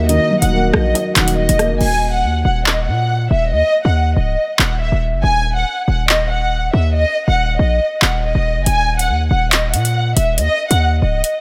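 A small room and light reverb frame this menacing, ominous drill excerpt, cut from a longer piece, which moves at 140 BPM in a half-time 4/4 feel in Eb phrygian over an Eb minor chord. A dark, lush studio violin section carries the bowed melody up front with vibrato, a soft attack and a smooth top, trailed by digital delay, and it sings throughout until 11.4 seconds. Beneath it, a hard-hitting 808-style bass hits punchy and heavy, its sine tone edged with a noise layer, a fast attack and a decaying tail. The electronic drill kit sits up front with metallic hi-hats, handclaps, rim clicks and a crash cymbal, though the hats drop out from 1.8 to 8.7 seconds. The opening bars also hold a felt-muted upright piano, mellow and boxy with audible action noise, plus a glassy, ethereal glass harmonica with beating in the background, both ending at 1.8 seconds. Briefly at the start, a round, detuned octave-layered synth lead adds a faint second line, softened by chorus and delay.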